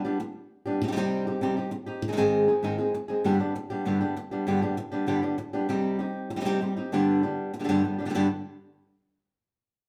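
A wet, large studio reverb surrounds a lone fingerpicked acoustic flamenco guitar, set up front and warm in tone, in this short fiery and mournful cut from a longer flamenco piece. At a brisk 196 BPM in straight 4/4, the guitar circles through G, C minor and A-flat harmonies, ranging from G2 to Ab4 before it stops at 8.3 seconds.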